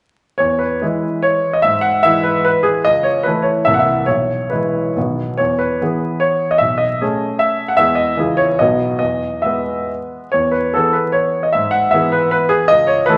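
Vinyl crackle and a dulled top end sit over a wet recital hall reverb, framing a clear, present grand piano placed up front as it plays alone from 0.4 to 13.2 seconds. This classical, romantic triple-time dance in 3/4 and E major moves with proud, rustic dotted rhythms and a free rubato feel, at a tempo between 128 and 167 BPM. The harmony leans on E major, touching a surprising C7 and a rich B13 before the opening idea returns at 10.3 seconds, in what is a short cut from a longer piece.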